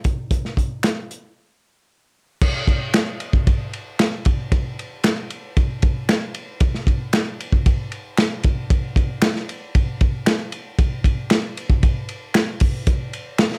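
A straight 4/4 soul groove at 115 BPM drives this short, urgent excerpt cut from a longer piece, built on a crunchy breakbeat drum kit of kick, snare, hi-hat, ride and crash that sounds saturated and gritty, with a tight kick, medium-tuned snare, dark cymbals and a rolled-off top sitting up front in a small, dry room. Finger snaps join at 0.8 seconds, human and lower in the mix with a short live-room ambience. After a brief break from 1.4 to 2.4 seconds, the beat settles into its second section and carries on to the end.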